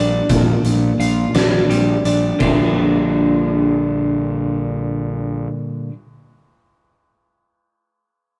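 In a straight 6/8 at 56 BPM in dotted quarters, this cathartic, bittersweet fragment of quiet-loud alternative rock in Bb major sets a bright, clean, picked twelve-string electric guitar arpeggiating over a Bb6 chord, alongside an overdriven, fuzzy fingered electric bass holding Bb1 until 5.5 s and a punchy, fat-snared, oversized low-tuned drum kit with dark cymbals that plays only from 0.3 to 2.6 s, all in a rough, warmly saturated rehearsal-room sound with moderate stone room reverb.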